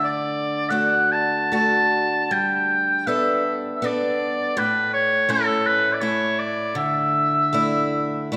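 Bathed in the long, wet reverb of a church or concert hall, this brief haunting, longing Celtic folk fragment drifts in a rubato 3/4 at around 72-82 BPM, with a classical-style oboe singing the melody with light vibrato over a woody, boxy picked acoustic guitar on old strings, both up front and moving through D, Gadd9, A and Dsus2 across its 8.4 seconds.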